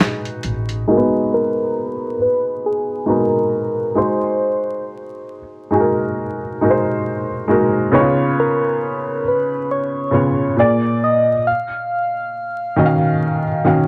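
Vinyl crackle and a moderate studio reverb surround this hazy, reflective lo-fi hip hop excerpt, cut from a longer piece. It moves at a slow 68 BPM in 4/4 with a 16th-note swing, in G# dorian. A lo-fi sampler-style drum kit plays at the start, its handclaps, hi-hat and muffled, pitched-down snare carrying a compressed 12-bit grit. A pizzicato upright bass adds a woody note between 0.4 and 0.8 seconds, and the drums fall away at 0.9 seconds, where a filter sweep begins. Throughout, a felt-muted upright piano carries the accompaniment, mellow and intimate with a short sustain, audible action noise and a cassette-tape softness. Above it, a round, keys-like FM synth lead with a triangle tone, chorus and a quick, decaying attack sings the melody from the opening over chords moving from G#m7 through G#7, C#7 and A#7 to D#m9.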